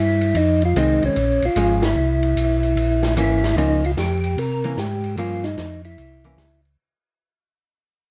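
Two tonewheel organs open together at 0.0 s in this soulful, bluesy soul jazz organ trio, swinging at 149 BPM in a fragment cut from a longer piece: one carries a percussive melody through a slow rotary speaker up front, while the other lays down a round, mellow bass line with chorus vibrato, soon joined by a vintage drum kit of hi-hat, ride and snare with dark cymbals and a clean, compressed hollow-body guitar comping underneath, as the band hits an accent at 1.8 s over changes from Fm7 to C7b9 before fading out from 3.6 s in a dusky production with light reverb.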